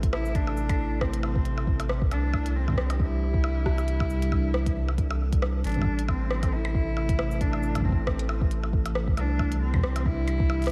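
A small, lightly reverberant room gives this brief cut from a longer IDM piece a close, eerie and intricate feel. It sits in A minor at 136 BPM in 4/4, with a gentle 16th-note swing. A glassy FM pad holds ethereal, mellow chords through ensemble chorus, its own reverb and a vintage 12-bit sampler grit, moving between Am and Cadd9. Underneath, a round analog bass sits up front with a deep, dark tone, while a soft electronic kick and a glitchy kit of clicky hi-hats, percussion blips, rim clicks and shaker, both re-recorded in a small room, run throughout. From 0.1 seconds a single bowed cello carries the melody in a narrow middle range, its focused, boxy tone and vibrato treated with an analog delay.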